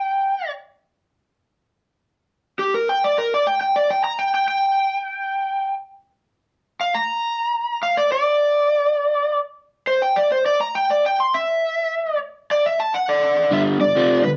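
A small, lively room gives this raunchy, driving rock excerpt at 137 BPM, swung eighths in 4/4, its live-band feel as an up-front overdriven slide guitar, played with fingerpicks, wails a solo melody from G4 to C6 over unaccompanied ground until a crunchy, double-tracked, picked rhythm guitar hits a low riff on a G5 chord at 13.5 seconds.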